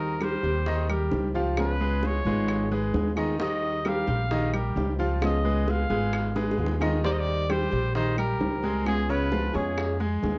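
Latin music in the Cuban son and guajira vein, this relaxed, sunny passage moves at 132 BPM in a straight 4/4 in E-flat major, cut from a longer piece. A punchy, vintage-toned trumpet carries the melody with light vibrato, playing as a solo through the first 7.0 seconds, where a drum fill from 6.4 seconds leads into the next section. Beneath it, a fingerpicked flamenco guitar supplies accompaniment while a brilliant grand piano spins arpeggios up front, its long sustain and audible action noise giving an intimate feel. An upright bass sits forward in the mix with a thumpy, dark pizzicato tone from gut strings, and high-tuned bongos played with soft hands sound distant in a large room, in the background, joined by close, dry, woody claves. The harmony alternates between Eb6 and Db7 chords, and the whole is framed by light reverb in a dry, close 1970s-style studio sound.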